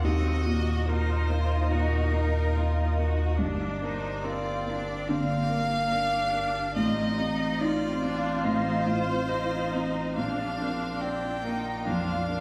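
From the first moment, a felt-muted upright piano with thick, boxy tone and audible action noise, a focused, vibrato-rich solo violin carrying the melody, a distant bowed cello on a second line, a clear viola and a deep, round sub bass sound together in this hopeful, tender neoclassical piece at a rubato 71 BPM in Bb major, while a pure, detuned organ-like pad with ensemble chorus holds calm sustained chords in the background, the whole set back in a wet recital-hall reverb as the harmony moves from Ebm through Gm7 and F7/A to arrive on Bb at 10.2 seconds.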